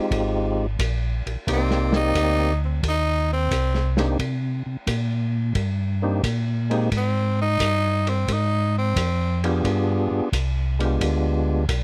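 A relaxed, swung eighth-note groove in 4/4 drives this short soul jazz organ trio cut, soulful and late-night in mood. A mellow, round tonewheel organ carries the bass line through chorus vibrato and a slow rotary speaker. A second tonewheel organ, fat and percussive with audible key click and its own slow rotary speaker, plays the melody up front. A vintage drum kit sits lower in the mix on hi-hat, kick, snare and ride, its muffled, lo-fi sound, dark cymbals and tight kick suggesting a small room. A raspy, growling tenor saxophone enters at 1.5 seconds for a gritty solo and stops at 9.4 seconds, over chords moving from Fm7 to Cm7, Abmaj7 and G7b9. The dry, close recording has a 1970s studio character.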